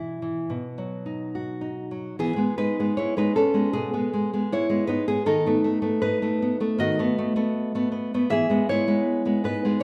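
The recording opens in a resonant recital hall, its reverb lingering for about 1.6 seconds around a single nylon-string guitar that sits up front in the sound. This is a romantic piece for solo classical guitar in E major, tuned slightly high at A4 = 441 Hz, moving in 4/4 at a flexible rubato pace between 69 and 82 BPM. The fingerpicked guitar carries the whole piece with a warm acoustic tone, spanning from B2 up to E5. A brief opening phrase rests on B before the music settles onto E at 2.2 seconds and moves on into a longer second passage. The harmony drifts through B7 over D sharp at 5.3 seconds and returns home to E at 8.3 seconds, giving the sunny, nostalgic mood a gentle sense of arrival. This short excerpt is cut from a longer piece and lasts just under ten seconds.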